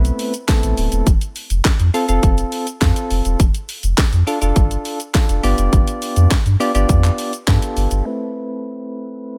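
A straight 4/4 house groove at 103 BPM drives this bittersweet dance-pop excerpt in A minor. It opens on a drop where a punchy, layered electronic kit with a cracking snare, handclaps, hi-hat and shaker sits up front over a deep, round sine sub bass that pumps against the kick, while a faint, jingly tambourine shimmers underneath from 0.5 seconds. Soft, triangle-toned electric-piano-like synth keys carry the Amadd9, F, Dm/F and G7 changes with chorus, tremolo, sidechain pumping and a low-pass filter sweep, then play alone after the drums and bass stop at 8.0 seconds, returning to Amadd9 in a digital ambience.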